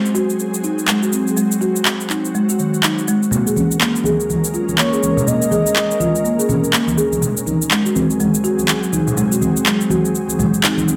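An airy, ethereal pad holds sustained chords in a soft chorus-and-reverb haze, while a folk marimba played with soft mallets spins out mellow, woody arpeggios through a low-pass filter and delay. This is a spiritual, warm stretch of afro house at 123 BPM in 4/4, with a 16th-note swing giving the groove its gentle lilt as the harmony moves from Ab7 to Bbm7 and back to Ab7. Produced electronic shaker and handclaps sit up front, and bright, thin-skinned congas join at 3.3 seconds, sounding distant, as if played by soft hands in a large room. Between 4.8 and 7.0 seconds, a smooth, expressive sawtooth-and-triangle lead sings a brief phrase with vibrato, portamento, chorus, delay and a ring-modulated edge. A light, small-room reverb lends the whole passage a close, intimate sense of space.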